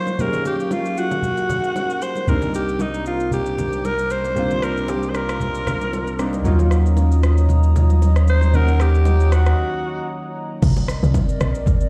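The recording has a digital ambience, as if played over a big sound system in a bare room, with a large studio reverb around the parts. This deep, late-night amapiano cut, taken from a longer piece, moves at 115 BPM in 4/4 with a light swing on the sixteenths, over chords of Ebm9 and Cm9. A raspy alto saxophone sits up front with the solo melody, its vibrato and smooth top trailed by tape echo. Beneath it, round analog keys with chorus and a filter sweep play the accompaniment, while a hollow, flute-like pad holds soft sustained chords with chorus and sidechain pumping. An electronic afro-pop kit with a deep kick, crash cymbal, rim click and shaker carries a vintage 12-bit sampler grit, joined by bright bongos and congas played with soft hands in the background. A punchy sine sub bass with a pitch-drop attack enters at 2.3 seconds, and after a short break at 9.6 seconds, a tight, percussive FM log drum bass with a noise layer drops in at 10.6 seconds.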